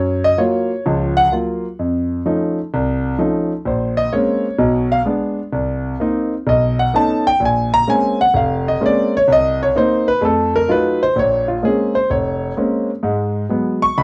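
Solo jazz piano in Bb minor, swinging at 128 BPM in 4/4 with a late-night mood, heard in a 14-second excerpt cut from a longer piece. A clear concert grand carries everything alone from 0.0 to 14.0 seconds, sitting up front with a natural tone and deep bass as it ranges from F1 up to Db6. The harmony moves from Gbmaj7 through F7b13 to Bbm9, passes through chromatic colours like Bm6 and B9, and returns to Bbm9 by way of Cm7 and F7b9 before the section begins again at 11.1 seconds and closes on Abm7. The piano has a cassette tape character, and a short, wet booth ambience keeps the sound close and intimate, like a home recording.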